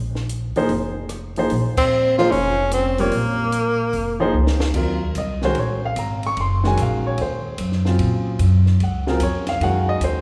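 This fragment of a longer piece was captured in a resonant church or concert hall, whose lingering reverb gives it a spacious, hall-like glow. It is cool, hypnotic modal jazz with a swinging feel, built on a suspended chord that gives way to a minor seventh chord at 4.7 seconds. A woody, pizzicato upright bass with steel strings sits up front from the start, joined almost at once by a compact cocktail drum kit with dark cymbals, a high-tuned snare and a tight kick, whose dry, natural sound covers crash, ride, hi-hat, rim clicks and snare. A warm baby grand piano provides accompaniment close to the listener. A breathy tenor saxophone takes a brief solo from 1.8 to 4.3 seconds, with a soft attack, vibrato and scooped notes, after a band accent. A short drum fill then leads into the next section, where the bass, drums and piano carry the groove.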